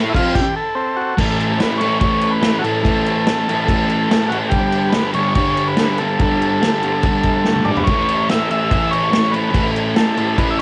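A straight 4/4 pulse at 143 BPM drives this swaggering, raw garage rock excerpt in A major, which opens with a buzzy, overdriven combo organ solo and a stop running to 1.2 seconds. A thick, dark, double-tracked fuzz guitar riff sits up front beside the organ's lightly vibrato-tinged melody, while a vintage acoustic kit with a punchy kick, medium-tuned snare, toms, dark crash cymbals and a roomy, distant character drops in a fill at 7.4 seconds. Light reverb and a dull, cassette-recorded home sound give the whole track a lo-fi grit.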